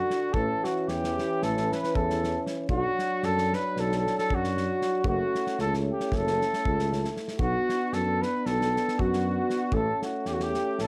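This excerpt sounds like a brass band caught in a moderate small room, with a roomy, slightly distant sheen around a fiery, virtuosic Balkan folk tune in B minor, pushed along at 230 BPM in a straight 9/8. A mellow cornet carries the melody up front, its light vibrato and plate reverb giving it a classical polish, while a very quiet flugelhorn traces a second line in the same register. Two euphoniums fill the accompaniment, one soft-attacked with vibrato sitting in the background and the other carrying a vintage, band-limited colour lower down. A mellow tuba enters at 0.3 seconds to anchor the bass, and a loose acoustic drum kit of tight kick and medium-tuned snare sits mid-forward in the small room from 0.1 seconds. The harmony cycles through A, B minor and F-sharp minor before landing back on A near the close of the 10.9-second passage.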